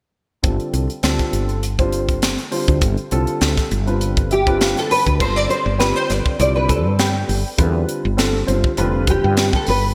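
Electric jazz fusion at 101 BPM in 4/4, this soaring, slick excerpt sits in G mixolydian with a light swing on the sixteenths and opens on a G9sus4 chord. From 0.4 seconds an airy, polished drum kit with a high-tuned snare, punchy kick, hi-hat and crash sits up front under gated reverb, joined by a dark, growly fretless bass and a baby grand piano whose intimate tone carries audible action noise, long sustain and analog chorus. The piano plays a fill from 4.0 to 5.2 seconds, leading into the second section. At 4.3 seconds a fingerpicked nylon-string guitar takes the melody in a classical style, treated with ensemble chorus and placed up front. The whole is bathed in a lush hall reverb with a bright 1980s-style digital sheen.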